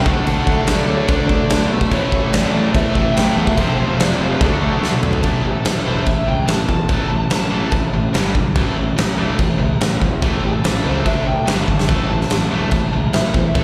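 Hard rock at 144 BPM, swaggering and energetic in this cut from a longer piece, heard live through a venue PA with recital-hall reverb: a huge arena drum kit sits up front with a punchy kick, medium-tuned snare, crash and toms; a fingered bass growls with overdriven fuzz beneath; a tight, bright distorted riff guitar and a very quiet sludgy one churn throughout; a raw, double-tracked garage guitar also plays the riff from the start until 5.2 seconds, when a drum fill launches the dark, bluesy lead guitar, already carrying the melody with slapback echo and analog delay, into a solo that pauses at 7.9 seconds and returns at 10.5 seconds.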